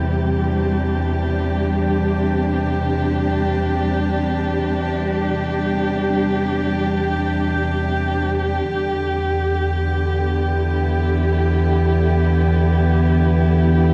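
Bathed in a huge, cavernous reverb that lingers for 7.0 seconds, this fragment of dark ambient drone sets an ominous, rumbling low drone with its own built-in reverb beneath a close, woody cello section holding lush bowed chords with vibrato up front, shifting from C/E to Em7 at 8.7 seconds.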